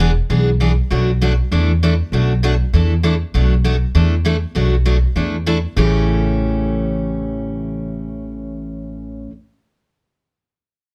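Swinging and playful, this brief cut from a longer piece of acoustic string swing in the jazz manouche style moves at a brisk 198 BPM in A major. It pairs a full-bodied, picked jumbo steel-string guitar playing accompaniment with a woody, thumpy pizzicato upright bass on gut strings, both up front and together from start to finish. The harmony opens on E7, rocks between Bm7 and E7sus4, and arrives at A7 at 5.8 s, all in a lightly reverberant space.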